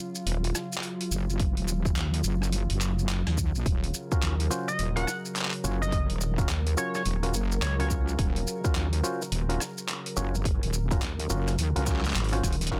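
A heavy, wobbling wobble bass sits up front in this funky, gritty glitch hop excerpt, its detuned, saturated sawtooth tone thickened with chorus as it holds the low end from 0.3 seconds. Around it, a warbly tape-like pad sustains nostalgic, lo-fi chords with a slow attack and built-in reverb, pumping against the sidechain, while close, dry maracas add a grainy acoustic shimmer. A pitched-down, overdriven boom bap sampler-style kit supplies handclaps, hi-hat and rim click, its hats dulled by a low-pass filter, and a punchy, layered electronic kick joins at 1.4 seconds. An auto-wah clav enters at 4.1 seconds with stringy, percussive stabs, overdriven through a combo amp and echoed by digital delay, and a tearing, edgy sync lead carries a brief vibrato-laced melody from 4.7 to 7.9 seconds, colored by cassette tape and delay. The passage rests on an Ebm9 chord and closes with a band accent, a drum fill and an electronic impact, all within a dense, heavily limited modern mix bathed in light reverb.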